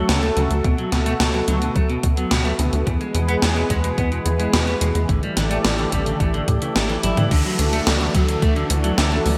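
A steady, straight 108 BPM pulse in 4/4 drives this nostalgic, romantic synthwave excerpt in D major, built on an up-front, tape-warm 80s drum machine with gated-reverb snare, hi-hat, toms and crash, a thumpy electronic kick entering at 0.6 seconds, and a tight, punchy sawtooth sequencer bass with a saturated filter pluck. A detuned, warbling analog pad sustains chords from Dmaj7 through Bm7/D, E and A7sus4 with chorus and sidechain pumping, while a bright, twangy clean guitar picks arpeggios through digital delay and a dark, fingered electric guitar plays a very quiet riff beneath. After a drum fill at 7.0 seconds, a background downlifter arrives at 7.3 seconds as the harmony settles on Dadd9, all set in a lush hall ambience with bright 1980s-style digital production.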